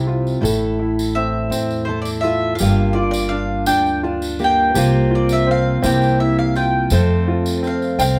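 In a lilting 6/8 at 55 BPM, this nostalgic acoustic folk passage from a longer piece sets fingerpicked, up-front dreadnought steel-string guitar with finger squeak, a woody, long-sustaining upright piano arpeggiating and thumpy pizzicato upright bass over an Am, Gm7, C7sus4, C7 to F progression, while a distant, jingly tambourine enters at 0.3 s, a round, double-strung mandolin takes the solo from 1.2 s, and a nasal, metallic lap resonator guitar slides in on a single high note at 8.0 s, all captured as a band playing live in one studio room with moderate reverb and a warm overall glow.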